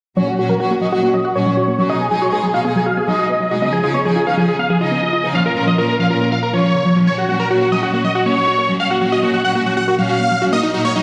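Heard through a big sound system in a bare room with a lush hall reverb, this soaring, uplifting trance excerpt sets a huge, euphoric detuned supersaw lead with phaser, delay and a filter sweep over a close, bowed studio string section holding sustained chords with vibrato, while a round, full-bodied analog pluck, coloured by chorus and delay and its own filter sweep, spins arpeggios throughout.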